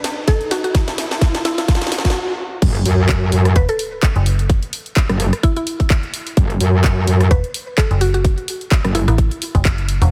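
Bass house at 128 BPM in F# minor with a bouncy, gritty swing, this excerpt from a longer piece opens on a house kit drum fill of cracking snare, hats, rim clicks, handclaps and crash, a woody, mallet-like synth pluck with chorus and tape echo, a tight, up-front electronic kick and a background riser, then drops at 2.6 seconds with a sub-drop impact as an aggressive, distorted metallic wobble bass with sidechain pumping enters, joined at 3.6 seconds by a mellow, tube-saturated FM bass, all under a heavily compressed, radio-like sheen with light digital ambience.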